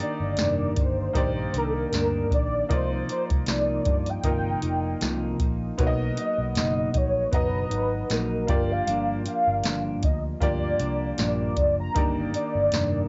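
A velvety sawtooth synth lead carries the melody from the opening, riding ensemble chorus and tape echo over a woody, slightly detuned upright piano, a dark, clean fingered electric guitar with subtle chorus and vibrato, and an up-front analog rhythm box with a deep kick, crisp snare and metallic hats. A foam-muted, round picked bass joins at 0.2 s, its tone thickened by transformer saturation, as the chords drift from Cm11 through Bmaj7 and Gm7 to Ebmaj7. This nostalgic, laid-back bedroom-pop fragment moves at 78 BPM with a gentle 16th-note swing, and its light reverb and hazy cassette sound, dulled above 7.7 kHz, give it a homemade intimacy.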